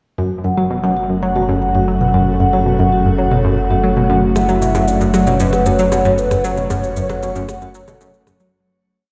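A bright, up-front analog pluck cycles a five-step riff that drifts against the bar in this hypnotic, expansive piece of ambient space music, joined by a mellow vibraphone with soft mallets tracing a three-step arpeggio, a deep sine sub bass holding the root and, from 0.9 seconds, an evolving, detuned wavetable pad of sustained chords, while a dark octave-layered synth lead with vibrato and phaser sings a free melody from 4.4 seconds alongside light electronic blips, high conga and shaker, all set in a lush hall reverb before a fade-out from 5.7 seconds.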